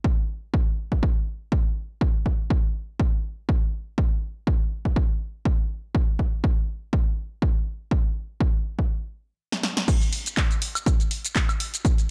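A swung 122 BPM house groove in 4/4 opens on an electronic kick drum alone, punchy and tape-warm, re-recorded in a large room yet sitting up front, carrying a joyful, euphoric mood through this short cut from a longer piece. After a stop at 8.9 seconds, a punchy analog drum machine comes in with a drum fill at 9.5 seconds, bringing crash cymbal, handclaps, hi-hat, shaker, snare drum and woodblock. The drop lands at 9.9 seconds, and the overall sound stays dry and close.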